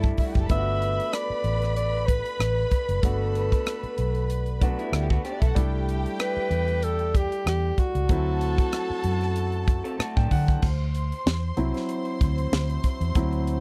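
Lush 1970s-style soul with a romantic feel, this is a short passage cut from a longer piece, with a gentle sixteenth-note swing. A breathy, whispered alto saxophone carries the melody up front from 0.5 to 10.0 seconds, its soft attack and light vibrato giving it an intimate, pop-style voice. Underneath, a tight funk drum kit with a high-tuned snare, rim clicks and hi-hat sits up front and polished, while a dark, round, foam-muted electric bass anchors the low end. A clear concert grand piano accompanies throughout, a smooth, bowed violin section adds a second line with close vibrato, and a slightly broken-up, lo-fi electric guitar drops in brief picked riffs. A metallic, ringing vibraphone with a slow motor vibrato glints in the background. The harmony moves from Gmaj9 to C6 to D9, and after a piano fill the piano takes a solo from 10.6 seconds over the D9, all captured in a dry, close 1970s-style studio sound.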